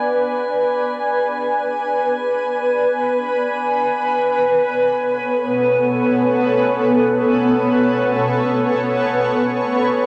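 A blurred, granular cloud pad sits up front, holding slow-blooming sustained chords that shift from Bm to F#m/B around 3.7 seconds, its built-in reverb and cassette-tape character lending a hazy, evolving glow. Beneath it, a drifting glass-harmonics texture hovers on a single high note with chorus and calm sine overtones, while a crisp electronic hi-hat, re-recorded in a small room, ticks along barely audibly from 0.1 seconds. This spacious, meditative ambient dub fragment, cut from a longer piece, carries the gentle grain of a home cassette recording in a moderate studio reverb.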